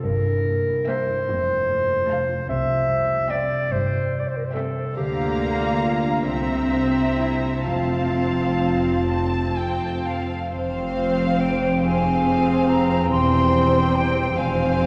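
A warm, up-front clarinet opens this serene, rubato slow movement in 6/8 over ringing, thumb-plucked harp arpeggios and a veiled bass of muted cellos and double basses, with muted violin sections taking the melody and a lush second line and muted violas adding soft-edged accompaniment from 0.9 seconds, before the harmony turns to minor at 10.5 seconds, where a mellow horn section enters in the background with sustained chords and an airy, distant flute adds its own line from 11.0 seconds, the whole excerpt heard in the long, wet reverb of a church or concert hall.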